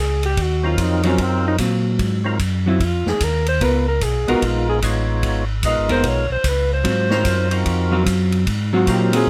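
Swinging and soulful, this soul jazz organ trio piece features a breathy, vibrato-laden alto saxophone solo with scooped notes over an up-front tonewheel organ bass that is round, dark and lightly overdriven with chorus vibrato and a slow rotary speaker, joined by a natural big-band drum kit with a punchy kick from 0.2 seconds, a fat, percussive second organ melody with third harmonic percussion from 0.6 seconds, and a clean, picked hollow-body electric guitar accompaniment from 1.0 seconds as the chords move from Ab13 to Db13 and back.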